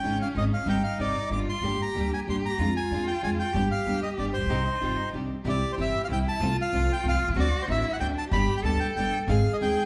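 A reedy, close-miked bandoneon carries the melody up front in this sultry, tense tango excerpt, played with rubato at 188 BPM in 3/4 and shifting from C minor to C major at 5.5 s. Beneath it, a single bowed cello sings a second line with vibrato, portamento and a soft attack, while a bright fingerpicked nylon-string guitar accompanies and a woody pizzicato upright bass anchors the low end up front. A very quiet, lush string section adds focused stabs throughout, all set within a large, wet studio reverb.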